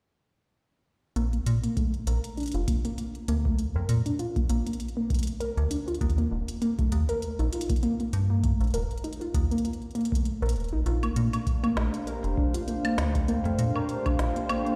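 Heard through a big sound system in a bare room, this IDM fragment sits in a large studio reverb with a moderate plate tail, giving it a roomy, slightly distant air. At 99 BPM in 4/4 with a light swing on the sixteenths, it moves in Bb major with a wistful, playful mood, tuned a touch flat of concert pitch, and it is clearly cut from a longer piece. From 1.2 seconds, a warbling, dusty, detuned pluck plays lo-fi arpeggios up front, darkened by a filter sweep and thickened with chorus and delay, while a metallic FM bass gives mellow, fast-decaying low notes. The organic electronic kit adds a woody snare, smooth hi-hats and woodblock through a gritty overdrive, and a deep, tape-warm electronic kick joins at 1.8 seconds. The harmony drifts from Bbmaj7 to an Eb5 and back, and when Bbmaj7 returns at 10.9 seconds a slow-blooming analog pad of sawtooth and triangle enters with chorus and sidechain pumping, softening the final moments.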